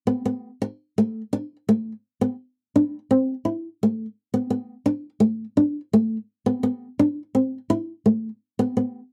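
A dry, close recording with a 1970s studio feel frames this carefree, sunny highlife excerpt in 12/8 at 113 BPM, where a lone nylon-string guitar, small, up front and fingerpicked, plays between A3 and E4 from 0.1 to 9.0 seconds.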